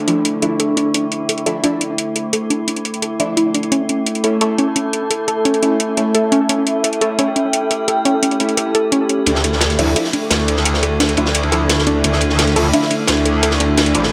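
Dark and futuristic, this cut from a longer dark technical drum and bass piece runs at 173 BPM in 4/4 with a straight feel, set in D harmonic minor and moving from Dmadd9 to A and back to Dmadd9. It opens on an eerie, wave-folded FM drone holding sustained chords under a nostalgic, tape-like pad with tremolo and a moving notch, both bathed in chorus and built-in reverb, while a very quiet electronic downlifter sounds in the first second. A lo-fi, dusty pluck spins arpeggios through digital delay, a nasal, band-passed chord stab with ring modulation and phaser punctuates the harmony, and an up-front, layered electronic hi-hat with metallic hats ticks throughout. Filter sweeps shape the drone and the arpeggios through the opening stretch until 9.3 seconds, when a build-up begins. There an aggressive, distorted FM wobble bass enters, bright and compressed, alongside a saturated, gritty breakbeat kit of snare, hi-hat and ride with dark, rolled-off cymbals, as a filter sweep moves over the stab. 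The whole mix sits in a wet digital room reverb.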